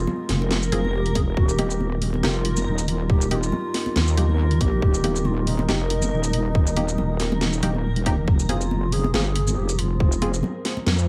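A swung, half-time deep dubstep groove is driven by a tight, up-front electronic kick entering at 1.2 seconds, a garage kit of cracking snare, bright hats and shaker, and soft-handed congas in the background, all beneath a heavy, saturated wobble bass thick with chorus. A breathy, distant ney carries the melody with vibrato and dub echo, while a very quiet, warbling vintage pad, muted filtered chord stabs with dub echo and a reversed, granular swelling texture drift behind it over chords moving from Fm to Eb and back. Vinyl crackle and light reverb give this cavernous, meditative excerpt a dusty, shadowed sound.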